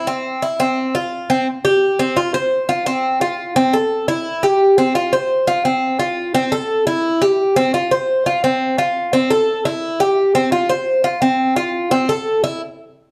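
A straight 4/4 pulse at 172 BPM drives this sultry, danceable Latin fragment, where a lone acoustic Cuban tres sits up front, picking metallic double strings, some of them octave-doubled, between C4 and C5, moving into a new section at 1.5 s and carrying on to 12.6 s inside a wet large-studio reverb and a dark production.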